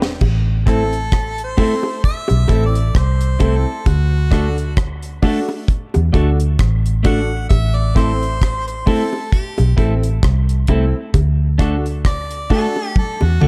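A slow, swung roots reggae groove at 66 BPM in A dorian rides on a dry, deep drum kit with a tight kick and high-tuned snare, alongside a round, punchy, foam-muted electric bass, both sitting up front, with a drum fill at the start and another at 13.0 seconds. Soft-handed bongos stay in the background while a dark, picked clean electric guitar with dub echo and woody upright piano stabs trace the Am and D chords. From 0.7 seconds a clear, distant harmonica with light vibrato and its own dub echo carries a solo through the whole cut, setting a serious, hypnotic mood within a warm, small-room production.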